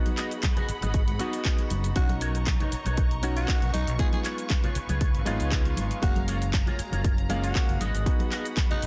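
A vintage electric grand piano with a clangy low end and short sustain opens this nu-disco excerpt alongside a lush bowed string section and a twangy, envelope-filtered electric guitar riff, the piano and guitar both trailing dub echo while the strings carry sidechain pumping. Set at 118 BPM in 4/4 with a light sixteenth-note swing, the groove settles in G# dorian as a pop kit with bright hats, handclaps and shaker joins, backed by soft-handed, ringing congas sitting in the background. A punchy, up-front electronic kick anchors the low end, and an overdriven fingered bass arrives at 0.7 seconds, amped and carrying sidechain pumping. From 2.0 seconds a breathy, raspy tenor saxophone takes the solo melody with a growling pop edge and a touch of delay. The harmony moves through G#m7, Bmaj9, C#7 and F#maj7 before returning to G#m7, giving the piece a cosmic, sleek mood within a dense, heavily limited modern master and digital ambience.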